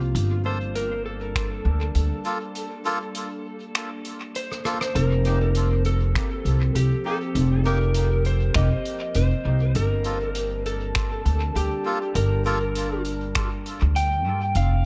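Deep and spacious, this ambient dub passage is cut from a longer piece and moves with a gentle swing, its echo-heavy mix set in a light, small-room ambience. A woody pizzicato upright bass sits up front and anchors the whole stretch, while a warbling, nostalgic pad with a lo-fi, detuned character holds sustained chords beneath, softened by chorus and its own reverb. A dark, slightly broken-up electric slide guitar carries the melody through dub echo, and a reedy, breathy melodica drops nasal stabs that also trail off into echo. The soft-mallet kit keeps to finger snaps, hi-hat and rim click in a big-room sound, with its own dub echo, a break from 2.6 to 5.0 seconds and a short fill leading into the second section. An analog electronic kick thumps briefly near 1.4 seconds, then returns at 6.2 seconds to add a deep, tape-toned weight as the harmony shifts between a minor add-nine chord and a suspended chord.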